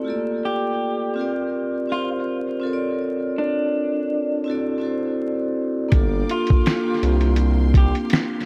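Reflective and nostalgic, this lo-fi hip hop excerpt moves at 82 BPM in 4/4 with a gentle swing on the sixteenths, sitting in G dorian and tuned slightly sharp to A4 = 444 Hz. A vibraphone struck with medium hard mallets, motor off, opens the excerpt with a metallic, ringing accompaniment up front, soaked in tape echo. At 0.5 seconds an electric guitar through a small old amp carries the melody in a narrow range, its tone slightly broken-up, fingered and compressed, also trailing tape echo. The harmony drifts through Gm7, C7sus4, Bbmaj7 and D7 before circling back, and at 5.9 seconds the texture fills out as a pitched-down, muffled sampler-style drum kit with a thumpy kick, fat snare, hi-hat and finger snaps lands up front alongside a smooth sawtooth-and-square synth bass with a moving notch. A lush bowed string section with vibrato enters at the same moment, distant and in the background. 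Light reverb, digital ambience, an echo-heavy mix and vinyl crackle give the whole a dusty, hazy sheen.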